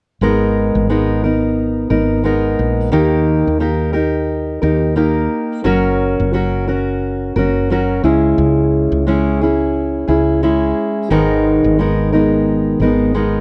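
A dry, close 1970s-style studio sound frames this reflective, tender acoustic pop passage at 88 BPM in G# minor with a gentle 16th-note swing, where a full-bodied, up-front fingerpicked jumbo steel-string acoustic guitar carries the accompaniment through G#madd9, D#, F# and C#m while a round, punchy, woody fretless electric bass sits beneath it, both playing from 0.2 to 13.4 seconds.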